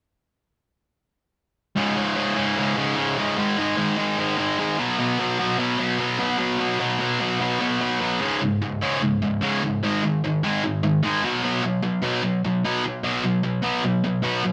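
A bright, overdriven punk excerpt with light reverb and the feel of a band playing live in one room, this upbeat, rebellious cut at 149 BPM puts a lone picked, double-tracked distorted electric guitar up front from 1.8 to 14.5 seconds, moving from one section into a second at 8.2 seconds over a repeating Db5, Ab5, Cb5 progression, tuned slightly flat to A4 = 435 Hz.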